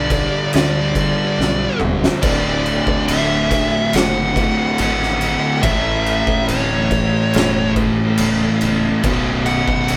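A live, single-room sound with moderate reverb carries this brooding, hypnotic stoner and doom metal excerpt in 4/4, where a dark, up-front fuzz lead guitar plays the melody over a double-tracked fuzz guitar riff and two thick fuzz guitars, one very quiet and one in the background, while a growling, round, punchy overdriven fingered bass sits underneath and an oversized low-tuned drum kit with boomy kick, fat snare and crash cymbal sounds saturated and gritty in the foreground, playing a fill from 1.4 to 2.2 seconds as the chords move from G through D and A to B5.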